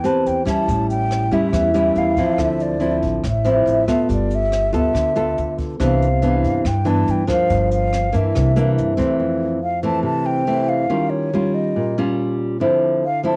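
Sophisticated and sunny, this 141 BPM bossa nova cut from a longer piece sets a mellow, hollow concert flute with vibrato and a soft attack over an up-front, fingerpicked nylon-string guitar with a woody tone, pizzicato upright bass and a jazz brush kit with a boomy kick, hi-hat and rim click, all moving through rich jazz chords in C major until the bass and drums drop out by 9.1 s and the flute and guitar carry on alone into F major at 9.2 s, with light reverb and the soft haze of a home cassette recording.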